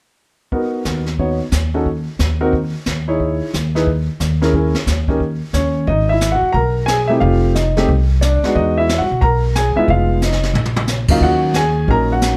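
A brisk, swung 4/4 carries this moody, smoky jazz piano trio excerpt, with a distant, roomy brush kit of dark cymbals, a high-tuned snare and a boomy kick setting the pulse, and a woody, growly upright bass arriving up front at 0.9 seconds. An intimate concert grand, warm with deep bass and audible action noise, leads the melody over minor-seventh and ninth harmonies. The tune shifts into a new section at 5.9 seconds, and a drum fill at 10.2 seconds ushers the chords back home, all in a dry mix.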